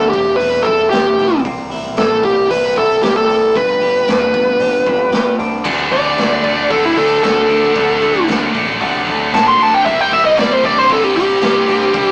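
A straight 4/4 pulse at 114 BPM drives this brooding, dark quiet-loud alternative rock passage. It features a gritty garage drum kit (punchy kick, medium-tuned snare, hi-hat and crash) in a pumping stone room, a growling overdriven picked bass, and a twangy, compressed twelve-string electric guitar in the background playing clean arpeggios over Em, C and G. Up front, a dark, distorted bluesy lead guitar carries the melody and turns into a solo at 5.6 seconds, where a bright, scooped high-gain guitar riff enters as the chords move to D and Cadd9, all captured in a rough rehearsal-room sound with saturation, a small-speaker quality and moderate reverb.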